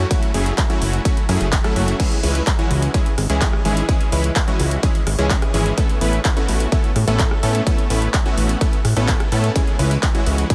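Lightly reverberant, this brief cut from a longer festival progressive house track surges at 127 BPM in C# minor with an anthemic, euphoric mood: detuned sawtooth supersaw stabs trail a diffuse ambient delay, and both they and a fat, saturated analog bass pump with sidechain, up front alongside a punchy electronic kick, while a big-room dance kit adds metallic hats, handclaps, crash, ride and rim clicks over chords moving from F#m7 to C#m and Aadd9.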